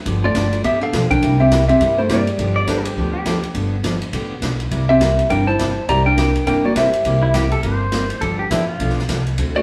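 Cheerful and down-home, this brief cut of swinging western swing country at 206 BPM puts a twangy, clean lap steel guitar up front on the melody, while a dark, hollow-body archtop guitar adds a second line that drops out from 2.4 to 4.9 seconds, a pedal steel guitar with fingerpicks and volume swells slips in at 2.6 seconds, a full-bodied dreadnought acoustic guitar with finger squeak picks the accompaniment, a woody pizzicato upright bass holds the bottom, and an airy big-band drum kit with a punchy kick keeps the swing, all in small-room ambience washed by studio reverb over chords moving from G9 to C9 and G7.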